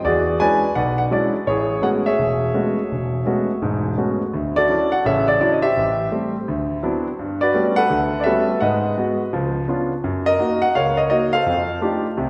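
A concert grand piano sits up front in a reverberant hall, its tone natural with a deep bass, ringing out in a roomy, wet acoustic. This is a short cut from a longer solo jazz performance, relaxed in mood, swinging its eighth notes in a comfortable 4/4. The piano plays alone from start to finish, spanning a broad range from the low bass register up into the upper middle of the keyboard. Rich extended harmonies carry the passage, moving from E13 to Amaj13 before turning at 4.3 seconds through Dmaj9, Am7 and D13 toward Gmaj9#11. Later colours such as C#7b9 and F#6 lead to a closing F13, giving the fragment a warm, gently searching harmonic drift.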